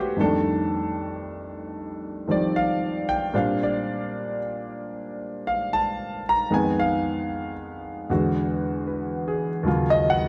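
A warm concert grand piano plays alone from the start, carrying this relaxed, swinging piece of solo jazz at 76 BPM in 4/4 with a lilting swung eighth-note feel. Up front and intimate, with deep bass, natural tone and audible action noise, the piano moves through rich harmonies such as F13, A#69, Fm7b5, E9 and D#m9. The performance sits in a live stone room with a reverberant ambience, and the 10.3-second passage is cut from a longer piece.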